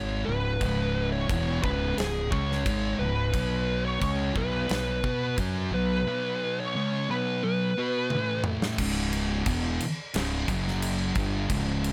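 A dry, close-sounding excerpt of ominous, hypnotic stoner and doom metal in C# minor, moving at 88 BPM in a straight 4/4. Up front, a dark fuzz lead guitar carries the melody between G#4 and C#5, colored by wah, distortion and delay, and it stops at 8.4 seconds. Two thick fuzz guitars sit in the background playing the riff with a warm, picked, distorted tone, while a growly, bright fingered bass with overdrive sits up front in the low register. A big acoustic rock kit enters at 0.6 seconds with bright cymbals, a punchy kick, a medium-tuned snare and toms, and a drum fill from 8.1 seconds leads into a new section at 8.8 seconds. The harmony moves from C# minor through B5 and A5, then back to C# minor before F#5 and C#5 close the passage.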